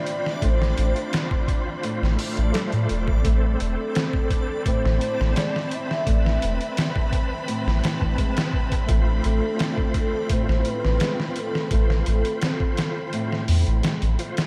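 Hypnotic and brooding, this trip hop excerpt moves at 85 BPM in a straight 4/4, cut from a longer piece and soaked in a dreamy cathedral reverb with a layer of vinyl crackle. A soft, round dub sub bass sits up front with tube saturation, beside a compressed, pitched-down sampler-style drum kit whose thumpy kick, medium-tuned snare and hi-hat carry a gritty, tape-warm character from a large room. A breathy sine lead carries the melody with gliding portamento and a dark edge, coloured by analog chorus, cassette tape and tape echo, while a reedy tonewheel organ adds accompaniment through fast rotary speaker, chorus vibrato, tremolo and key click. A fingerpicked nylon-string guitar plays small, dark arpeggios roughened by 12-bit sampler grit, a focused violin section holds sustained chords, and a very quiet reversed granular texture swells beneath them all. The harmony shifts from F/A to Amadd9 at 3.2 seconds and back to F/A at 8.9 seconds, and the kick drops out from 13.1 seconds to the close.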